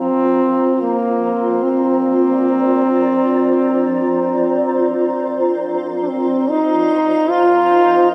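A mellow, close-miked solo trombone sings a calm, classically styled melody over a cloudy, blurred granular pad whose filter sweeps until 6.5 s, when the harmony shifts from Fsus4 to F7sus4, as dub echo trails the horn and a plate reverb wraps this hazy, peaceful ambient excerpt in a dreamy wash.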